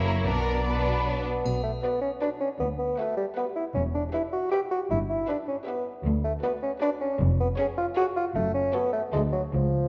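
A brisk 3/4 pulse at 156 BPM, played straight, drives this playful, whimsical film cue, a mischievous and magical fragment cut from a longer piece. Bowed string sections carry it. A focused, distant violin section takes the melody, while a second violin section with a soft attack sits in the background on a supporting line. A smooth, even viola section fills in the accompaniment, and a lush cello section shares the bass with a clear double bass section placed up front. A mellow, classical-style bassoon enters at 1.0 s as an up-front solo voice in the accompaniment, an airy flute section with a crisp attack adds a brief second line in the opening moments, and a dark-toned triangle sounds briefly at 1.5 s. The harmony begins in B minor, passing through Em and Em/G before shifting toward F# minor from 6.1 s by way of C#/E#, and it closes on a D chord, with a wet concert hall reverb lending spacious ambience.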